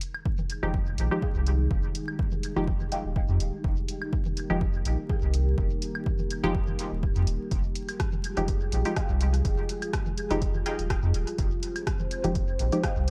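A round, sine-toned sub bass sits up front in this hazy, nocturnal dub techno piece at 124 BPM in F minor, sidechain-pumping beneath a punchy, dry kick, an analog drum machine's hi-hat and rim click with dub echo, background claves and congas, a muted, detuned sawtooth chord stab treated with chorus and phaser, a higher pulse-wave stab riff heard from 1.2 to 5.3 seconds and again from 9.0 seconds, and a slow-attack, warbling vintage pad holding an Fm9 chord, in an echo-heavy mix with vinyl crackle.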